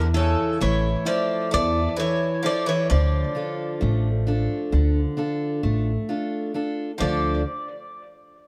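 Dark, softly reverberant production frames this brief, melancholic Greek folk fragment in 9/8, where a metallic, up-front bouzouki carries the wistful melody through analog delay, a brighter second bouzouki adds a lower line, a boxy parlour acoustic guitar with fresh strings and audible finger squeak picks the accompaniment, and a woody, thumpy pizzicato upright bass on gut strings anchors the harmony as it moves from A to D minor at 2.9 seconds.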